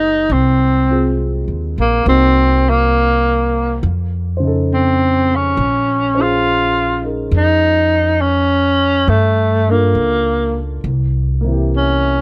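A breathy tenor saxophone carries the melody up front throughout this melancholic, smoky jazz ballad, its subtone sound, soft attacks, scooped notes and gentle vibrato giving it a whispered, intimate, vintage quality. Underneath, a dark grand piano comps with mellow, long-sustaining chords through a minor progression, while a pizzicato upright bass on gut strings adds a woody, thumpy pulse close to the ear. The slow swung feel and dry, close sound come from a brief section lifted out of a longer performance.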